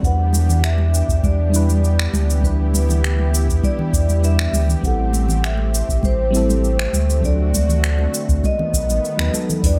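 This smooth, wistful sunset chillout piece opens all at once: a metallic, ringing vibraphone carries the melody with a slow motor vibrato and tape echo, over a mellow FM electric piano whose soft, dark tone is coloured by chorus and phaser. A lush, thick sawtooth unison pad sustains chords beneath them, its detuned, nasal shimmer softened by chorus. Up front, a round sine sub bass anchors the low end, while a deep electronic kick and a polished R&B kit of finger snaps, metallic hi-hats and shaker set a straight groove. Bright, close and dry congas, played with soft hands, join in the background at 0.3 seconds. The harmony drifts from Em7 through Am7 and D7 to B7 in light digital ambience, and the kick drops out between 9.0 and 9.6 seconds in this cut from a longer piece.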